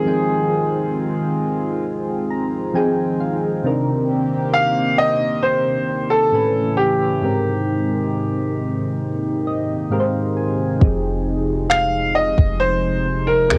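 Contemporary R&B with a sensual, late-night mood, where a clear, open concert grand piano carries the melody over mellow, round electric-piano-like synth keys that add fills and a shimmering, retro pulse-width pad with sidechain pumping, phaser and chorus, all but the bass colored by cassette tape in a moderate booth ambience, until a deep, boomy 808-style bass and an overdriven, up-front drum kit of finger snaps and soft kick join at 10.8 s.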